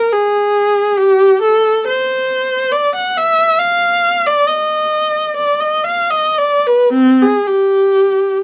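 In a free, rubato 6/8 that drifts between 35 and 48 BPM in dotted quarters, this 8.4-second fragment of a classical piece in C minor features a lone bowed viola, tuned to A4 = 439 Hz and played up front. Its rich tone carries a smooth, even line with vibrato across a range from C4 to F#5, giving the music a yearning, meditative mood. Light reverb and a dark production surround the single player.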